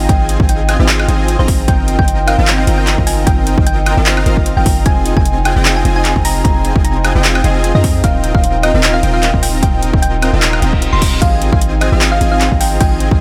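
Future bass with a playful, lush mood and a half-time, lightly swung feel, heard as a short cut from a longer piece. A round, tine-like synth pluck carries the melody, its gentle FM tone darkened and given shimmer by chorus, phaser and delay, while a huge, thick supersaw riff sits beneath it with sustained, detuned density. A concert harp ripples through arpeggios in the background, its fingerpicked strings ringing through a delay, and a deep, boomy 808-style bass sits up front with a mellow, decaying sine body. The bass, supersaw, harp and pluck all pump against the sidechain, while a punchy, overdriven electronic kick and a layered pop kit of crash, handclaps, metallic hi-hats and woodblock, both re-recorded in a small room, drive the rhythm. An impact opens the passage, a reverse cymbal sounds from 10.6 to 11.2 seconds, and the mix stays dry and close with little reverb over chords moving from Ab6 through Eb69/G, Fm7 and Eb69 back to Ab6.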